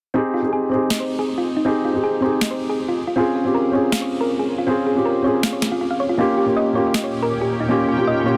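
Bittersweet and dreamy, this short half-time future bass fragment opens with a dark, mellow baby grand piano playing up-front accompaniment with audible action noise and digital delay, alongside a round, tine-like FM thumb-piano synth pluck spinning warbling chorused arpeggios, while a sharp, overdriven electronic snare enters at 0.9 s and a shimmering, ethereal granular pad with detuned unison and an octave-up sheen swells in at 6.8 s over the Eb7 that follows rootless minor-seventh chords, all bathed in a huge ambient reverb and a dense, heavily limited modern master.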